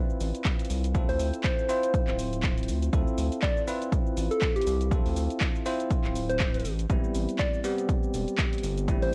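Moody and late-night, this deep house excerpt sits at 121 BPM in D dorian with a 16th-note swing, moving from Dm7 to Am7 at 6.7 seconds. A bell-like tine electric piano plays bright, clean stabs through lush chorus, tape echo and sidechain pumping, while a round, deep analog bass pumps beneath, an up-front electronic kick punches from 0.5 seconds, and a tape-warm analog drum machine adds handclaps, hi-hat and shaker. From 1.1 seconds a gentle, keys-like FM synth lead with vibrato, chorus and tape echo carries the melody, all in a dry cassette-tape sound.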